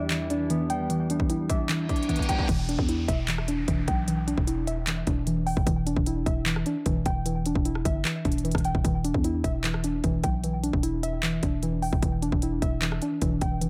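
Trap-flavored hip hop in E minor at 151 BPM with a half-time feel, brooding and melancholic, this short cut from a longer piece opens on an Em7 chord where a clean, compressed electric guitar with warbly pitch drift and analog delay sits over a nostalgic, tape-like pad in the background, both dropping out at 2.5 seconds. A dusty, detuned pluck carries arpeggios up front throughout, its lo-fi square and sawtooth tone softened by chorus, a filter sweep and delay, while an electronic trap kit with a hard-clipped kick, crisp hats, handclaps and rim clicks drives the track, and a reverse cymbal and downlifter sound around a drum fill just before a growling, buzzy 808-style bass enters at 2.5 seconds. The mix is echo-heavy with light reverb, giving the dark arrangement a hazy, vintage air.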